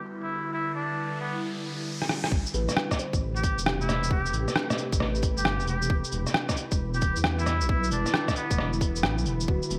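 An ethereal, chorused, pumping pad opens this rainy, melancholic future garage excerpt in E minor at 134 BPM alongside an electronic riser with a filter sweep and a wind-like noise texture, while a nasal, straight-muted trumpet with light vibrato and scooped notes sings a distant jazz-style melody through 12-bit sampler grit and delay; after a brief fill at 2.0 seconds from the muffled, pitched-down rim click, shaker and cabasa with gated reverb, an overdriven, tight electronic kick and a deep, rumbling detuned saw bass arrive at 2.3 seconds with a swung 16th-note feel, as a soft felt-muted upright piano with audible action noise murmurs in the background, the whole mix wrapped in vinyl crackle and bright 1980s-style digital sheen.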